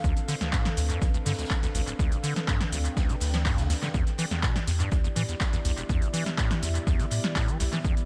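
Raw and hypnotic, this 123 BPM acid house excerpt in E phrygian moves from Dm7 to Em7 at 3.9 s. An overdriven, punchy kick sits up front, joined by a dry analog drum machine's handclaps, hi-hat, shaker and snare with tape echo, and a distant, roomy soft-mallet kit playing very quietly. A squelchy, resonant square-wave acid bass riff with a filter sweep, tube saturation, 12-bit grit and tape echo rides over a thick, saturated sine sub bass, while a detuned analog pad with chorus and phaser holds slow-attack chords in the background and a warbling, vintage ambient pad with its own reverb adds a slow-attack texture beneath it. The sub bass and both pads pump with the sidechain in a dry, echo-heavy mix.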